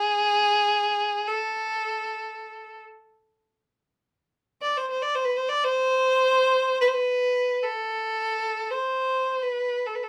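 This Arabic maqam ensemble piece in A maqam nahawand unfolds in free time with a hypnotic, soulful mood, tuned to A4 = 439 Hz. A single bowed violin carries the whole 10.1-second fragment alone, its clear, smooth and even tone shaded with vibrato as it moves between G#4 and D5. The violin sits up front yet sounds distant, framed by a moderate small-room reverb in a rough home-demo mix, cut from a longer piece.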